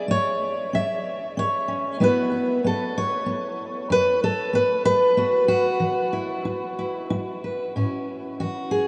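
Drenched in a huge, wet reverb with an 8.4-second tail, this brief excerpt sounds as if it were played in a vast, echoing space, yet the fingerpicked steel-string acoustic guitar sits up front with a warm, auditorium-sized body. Alone for the full 8.9 seconds, the guitar moves freely in a rubato 3/4 around 94 BPM in A major, passing from A through E/G#, B5/F# and Esus2 before returning to A at 7.8 seconds. The folk mood is warm and hopeful.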